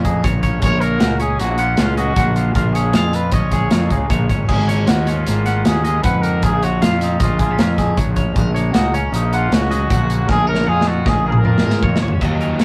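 A rough rehearsal-room recording in a small, moderately reverberant room captures this intricate, restless math rock and midwest emo passage in 5/4 at 155 BPM, where a punchy, vintage trumpet with vibrato carries the melody over a clean fingered electric guitar's accompaniment, a bright, compressed picked guitar playing arpeggios in the background, a dark, round fuzz bass up front, and a smooth acoustic drum kit with a tight kick and rolled-off top that plays a fill from 10.3 seconds, before a crunchy, double-tracked overdriven guitar riff enters at 12.2 seconds.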